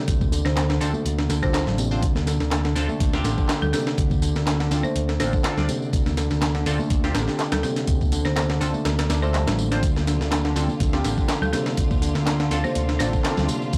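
A gritty, pitched-up sampler-style drum kit with a thumpy kick and high-tuned snare sits up front in this raw, funky breakbeat excerpt at 123 BPM in D minor, swung lightly on the 16ths and resting on a single Dm7 chord, joined by a round, amped picked bass, an overdriven reedy electric piano riff through a combo amp, and background tambourine, handclaps and thick-skinned congas. A nasal, band-passed chord stab with phaser, cassette tape and tape echo and a woody hard-mallet marimba melody filtered through a telephone sound with tape echo add color, while a rich, biting symphonic string section with sidechain pumping enters at 9.8 seconds. The dry hardware recording carries vinyl crackle.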